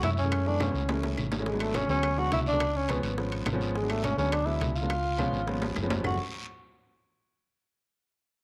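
A straight 4/4 pulse at a brisk 210 BPM drives this sultry, driving Afro-Cuban jazz fragment in F# minor, cut from a longer piece. The percussion sits low in the mix: distant, low-tuned congas played with soft hands, tight high-tuned bongos struck with hard hands, ringing metal-shell timbales in the background, a raspy guiro, and woody, dry claves that enter at 0.3 s. Drum fills mark the passages beginning at 0.6 s and 5.2 s. Up front, a dark, round, punchy hollow-body short-scale electric bass anchors the low end, while a warm grand piano supplies accompaniment through a harmony that moves from F#m9 through alternating G#m7b5 and C#7 chords before returning to F#m9. Above them, the solo tenor saxophone carries the melody with a breathy, whispered, intimate tone, vibrato, soft attacks and scooped notes, touched by a slapback echo. A moderate spring reverb and a small room reverb shape the overall space.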